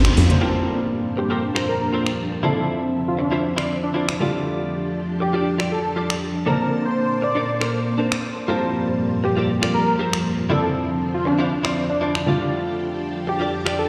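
Drenched in a long hall reverb and heard as if through a big sound system in a bare room, this groovy, cosmic nu-disco excerpt moves at 119 BPM in G dorian, cycling through Gm11, Dm9, F69 and Bbmaj9. A band accent opens it at 0.0 s, where a clean, compressed electric guitar riff, darkened by a low-pass filter and trailed by dub echo, sits over a house kit of finger snaps and metallic hi-hats in small room ambience. Moments later a warm grand piano joins to comp, and a vintage sawtooth string machine enters to spread full, slow-blooming chords under an ensemble chorus and a filter sweep. From 1.2 s a thick, nasal, detuned unison lead carries the melody with vibrato, tape echo and a cassette-tape tint.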